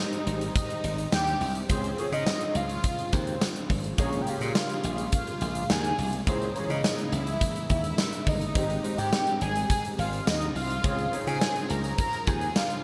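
A velvety synth lead opens this nostalgic, romantic 1980s-style pop excerpt, carrying the melody with chorus and vibrato over a lush violin section, a clear concert grand piano and a dark, warbling string-machine cello pad, all entering together. The huge arena drum kit arrives at 0.1 seconds and sits up front, its punchy kick, medium-tuned snare, hi-hat and tambourine drenched in gated reverb and a pumping room sound. A glassy slap bass joins at 0.3 seconds, bright and direct, holding the low end. In the background, the violins play a focused second line through a delay, the piano adds intimate accompaniment with audible action noise and deep bass, and the vintage cellos hold slow-attack chords with a sub octave and a moving notch. Smooth major-seventh and minor harmonies move at an unhurried, straight pace, and the bright digital production is bathed in a moderate plate reverb.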